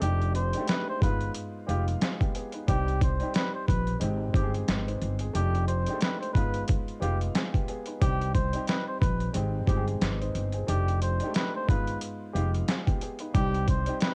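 Tough and moody, this swung boom-bap hip-hop excerpt moves at 90 BPM in C harmonic minor, cycling through F13, G7b9b13, Cm and Abmaj7 over a small-room, cassette-recorded home feel. Up front, a gritty, pitched-down sampler-style drum kit with a thumpy kick, medium-tuned snare and hi-hat is compressed and overdriven, while a woody pizzicato upright bass on steel strings sits low with transformer saturation and stops at 13.9 seconds. A warm upright piano supports a breathy, veiled cup-muted trumpet solo played jazz-style with light vibrato and a smooth top, both carrying a cassette-tape tint.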